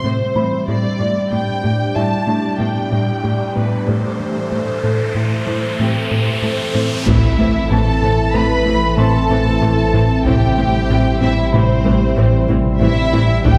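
In a straight 5/4 pulse, this relentless, futuristic excerpt of hybrid orchestral and electronic film score sets a lush violin melody over a glassy, warbling FM pad, tine-like synth pluck arpeggios with chorus and tape echo, a round analog bass riff, a rich cello section and a soft felt-muted upright piano. An electronic riser from 2.8 s gives way at 7.1 s to an impact; a second violin line enters at 6.4 s, and at 7.1 s expressive violas, clear trombones, dark French horns, a deep sine sub bass, double basses and a compressed, saturated taiko ensemble join, all heard from further back in a wet scoring-stage reverb.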